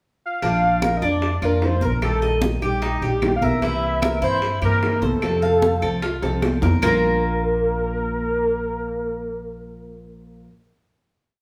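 A velvety, chorused synth lead carries song-like motifs up front over a relaxed, danceable Cuban son and guajira groove at 150 BPM in Bb major, where a picked, metallic tres spins an arpeggiated guajeo, a deep nylon-string guitar strums with muted slaps, a thumpy, dark upright bass plays a syncopated figure, and ringing congas, tight vintage bongos with hand bell and woody claves keep time until a drum fill at 6.2 s leads into a final Bb chord that hangs in the wet, large studio room until 10.0 s.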